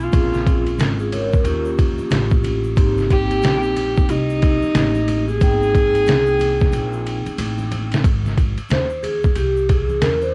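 A home cassette recording in a small booth gives this smooth, relaxed jazz-hop fragment its soft tape grit, set at 91 BPM in Ab major with a swung 16th-note feel over Bbm7, Eb9 and Abmaj9 chords. An up-front, warm bowed viola floats a pure sul tasto melody with tape echo until 7.4 s, over mellow, ringing soft-mallet vibraphone with slow motor vibrato, woody pizzicato upright bass with tube saturation, and bright shaker and congas distant in the background. A compressed, pitched-down, gritty sampler-style drum kit with a thumpy kick and medium-tuned snare plays a fill from 6.7 s, and the metallic vibraphone takes a solo from 8.0 s as the harmony settles on Ab.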